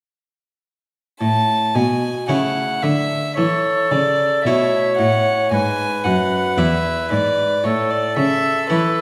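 An up-front violin with an airy, nasal gut-string tone carries the melody of this flowing, dance-like baroque-style sonata movement in A major at 56 BPM, entering at 1.2 s with a bright, plucked harpsichord and a rich, reedy period-style cello on the continuo, while a clear, distant oboe joins with a second line at 3.4 s, all set in a resonant recital hall.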